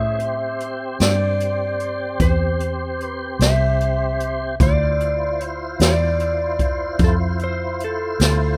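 This rough home demo has the close, natural sound of a small room, with the drums and bass placed up front. It is a short cut from a soulful, mournful slow blues in 12/8 with a straight feel, moving from Am7 to Dm7 at 4.6 seconds. An electric slide guitar, played with fingerpicks, carries the melody in a slightly broken-up, compressed tone. Beneath it, a tonewheel organ holds full, clean chords through a slow rotary speaker with chorus vibrato, while a vintage electric bass, foam-muted, dark and round, anchors the low end. An acoustic kit played with brushes comes in at 0.2 seconds, pairing a high-tuned snare and hi-hat with a boomy kick.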